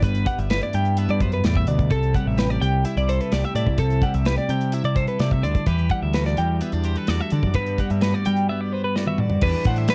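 A bright, wistful snippet of math rock and midwest emo opens with two clean, compressed twelve-string electric guitars, one chiming through chorus-tinged accompaniment and the other picking twangy arpeggios high above, while an overdriven, growling picked bass and a punchy, up-front studio drum kit drive a straight 4/4 at 128 BPM in G major. The harmony moves through G6, C69 and Em9 before returning to G6, and a drum fill from 9.0 to 9.4 seconds leads into an Em7. Light reverb and a dark, warm production soften the shimmer of the guitars, with the drums' rolled-off top keeping the cymbals mellow.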